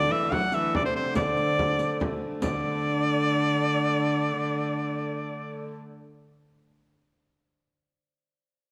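A wet recital-hall reverb surrounds this short, festive excerpt of a rustic medieval dance in D mixolydian, moving at 94 BPM in a straight 6/8. Up front, a bright, punchy shawm carries the melody with vibrato and a smooth top in a folk style, joined by a rich, fretted viola da gamba whose gut-string tone, airy bow and reedy ring give the second line a period flavour. A concert harp, thumb-plucked and ringing, adds another second line from the background, while a clear, earthy hurdy-gurdy holds a close, wheel-bowed drone. A deep, large frame drum struck with hard hands and a very quiet riq with dark, band-limited jingles keep time together, both falling away at 2.6 s. The shawm, gamba and drone stop near 5.7 s, leaving the harp to ring on until 6.4 s.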